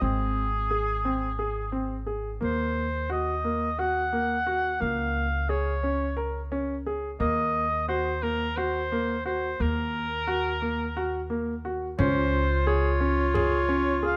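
An oboe with light vibrato sings the melody over clear grand piano arpeggios and a woody, pizzicato upright bass from the very first moment of this short cut from a longer contemporary chamber piece. The music moves in an uneven 7/8 at 176 BPM counted in eighths, in Eb dorian, with an urgent yet pensive mood. The oboe sounds roomy and classical in style, while the gut-string bass is dark and thumpy and the piano stays present and up front. Harmonies pass through Ab, Ebm6, Db6 and Ebm before settling on Dbmaj7 at 12.0 seconds. There, a mellow clarinet adds a second line and a frame drum played with hard hands joins in the background. The recording has light reverb and close, detailed microphones.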